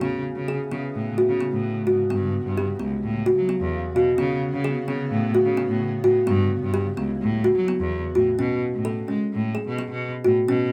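Playful and shimmering, this excerpt of a contemporary chamber piece in 9/8 at 258 BPM (eighths) sets a woody, thumbnail-plucked kalimba arpeggiating up front over a smooth, lightly vibratoed bowed cello bass line, while a blurred, evolving granular cloud pad with its own reverb sustains chords such as C#m7 and A69 in the background until 8.4 s, when the music shifts to Bsus2, all captured in a close, detailed, dry room.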